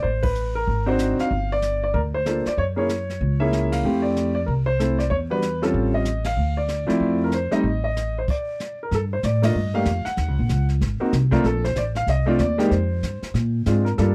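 A moody, smoky jazz piano trio excerpt swings at 189 BPM from the first beat, with an open, long-sustaining baby grand carrying the melody up front over a woody, thumpy pizzicato upright bass and an airy brushed drum kit with dark cymbals and a boomy kick, all in a dry, close 1970s-style small-room sound, as the band hits accents, drops out together for a stop at 8.3 seconds, and returns at 8.9 seconds in G minor through a winding run of rich extended chords.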